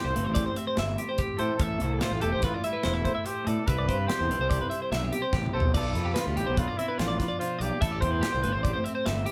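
A live-in-one-room studio sound with moderate reverb frames this intricate, wistful math rock and Midwest emo excerpt in 5/4, where a warm, compressed twelve-string electric guitar picks the chordal accompaniment in the background, a second, bright twelve-string guitar picks arpeggios up front, and a growly, punchy fuzz bass drives underneath, while a polished, airy drum kit enters at 0.2 s and adds a fill at 5.3 s; above them a distant, roomy trumpet with light vibrato and scooped notes carries the melody over chords moving from Am7 through Fmaj9#11, Cmaj7 and Bm7b5 back to Am7.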